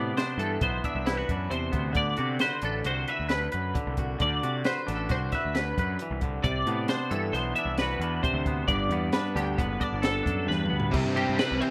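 A bright, clean twangy electric guitar and a bright twelve-string electric guitar with ensemble chorus open this wistful, playful math rock and midwest emo excerpt in 5/4, the twelve-string picking arpeggios over a punchy, fuzz-overdriven bass as a dark, small-room cocktail drum kit with a high-tuned snare joins at 0.2 seconds. The rough home demo mix carries light reverb, and the harmony moves through lush chords such as Cmaj9, D13 and Gmaj9. After a drum fill, a biting, double-tracked overdriven guitar riff cuts in at 10.9 seconds over a Cmaj7 just as the excerpt ends.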